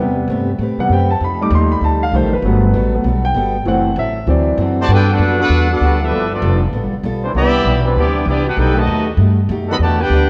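This is an energetic, brassy jazz excerpt with a brisk swing feel, cut from a longer piece. A clear concert grand piano opens up front with a solo lasting until 4.9 seconds, its deep bass ringing over a woody, thumpy pizzicato upright bass and a boxy, picked ladder-braced acoustic guitar that sits in the background with audible finger squeak. At 4.8 seconds a brilliant, tight trumpet section takes the melody with light vibrato, joined by a clear trombone section on a second line, and from 4.9 seconds a very quiet, mellow trombone section with a soft attack holds sustained chords beneath them. The harmony moves through rich extended chords, from Am9 and F9 toward Gmaj9, G9 and Cmaj9, closing on B7b13. The whole recording carries a worn, warbling cassette-tape character with pitch drift, set in a moderate scoring-stage reverb.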